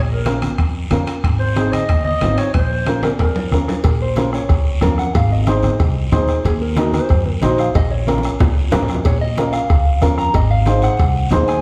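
Heard from further back in a large, wet studio reverb, this fiery, passionate cumbia in Bb minor runs at 184 BPM over woody pizzicato upright bass, a clear, boxy upright piano, a vintage soft-beater bombo, raspy guiro, and ringing low-tuned congas, with timbales and cowbell sitting in the background. A growling, gritty clarinet with vibrato carries the jazz-style melody in the opening seconds. After a drum fill, a mellow electric guitar enters at 3.9 s for a dark, clean, fingered solo as the chords move through Bbm, Ab and Ebm, in a clip cut from a longer piece.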